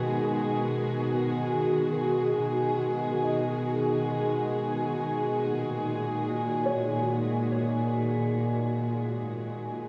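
A dark studio string section sits up front, holding bowed, sustained chords played sul tasto with a soft attack and light vibrato, and its close, intimate sound gives this melancholic, reflective ambient piece its weight. Behind it, a felt-muted upright piano traces quiet arpeggios in a higher register, its thick felt lending a mellow, vintage smoothness, and an analog delay trails each note. Both parts carry the gentle grain of cassette tape, and a wet studio reverb surrounds the home recording. The music drifts in free time, resting on a single minor seventh chord. Cut from a longer piece, it fades out from 6.9 to 9.9 seconds.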